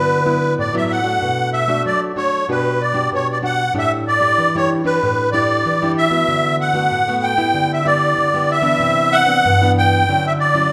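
A reedy, shimmering musette accordion carries the melody up front from the opening moment, its wet tuning giving an airy lift, while a dark, fingerpicked classical nylon-string guitar supplies the accompaniment just as close at hand. This playful, lively samba excerpt in straight 4/4 moves through lush chords such as Bm7, Gmaj7/B and A7sus4 before settling on Cmaj9 and Dmaj9. Both parts play throughout the 10.7 seconds, bathed in the generous bloom of a large studio reverb.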